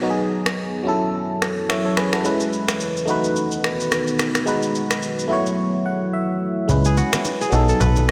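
A dreamy, reverb-soaked mix opens this sultry, hypnotic afrobeats excerpt at 108 BPM in C# minor, where a biting, barking FM electric piano and a deep, warbling ambient pad carry seventh chords. Overdriven electronic rim clicks, finger snaps and shaker drop out for a piano fill at 5.6 seconds, before a punchy, funky analog bass, very quiet congas and bongos, and a crisp, fingerpicked kora riff with analog delay arrive near 6.7 seconds.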